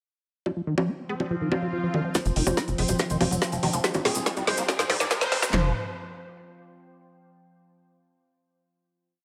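A squelchy, resonant acid bass line with accents and slides drifting against the bar opens this alien, hypnotic psychedelic trance piece in F minor at 142 BPM, joined from 0.5 s by a drum-and-bass kit with woody snare and metallic hats. An evolving drone and a very quiet juicy blip pluck follow at 1.1 s, then background risers at 1.4 s. At 2.1 s come a techno kit's heavy kick and cracking snare, a grainy distant cabasa and a thick detuned unison lead riff, and at 2.3 s a tight rolling sequencer bass, as filter sweeps drive a build to a final chord at 5.5 s in a lush hall.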